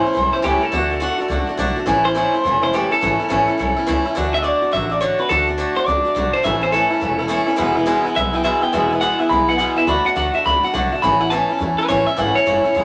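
A twangy, slightly broken-up electric guitar carries the melody through a small old amp in this retro, rollicking rockabilly excerpt, swinging in 4/4 across all 12.8 seconds. Beside it, a boxy, up-front acoustic guitar picks a swing-style accompaniment, while a woody, thumpy upright bass on gut strings sits lower in the mix. Moderate studio reverb gives the trio a touch of room as the chords move between A, D and E.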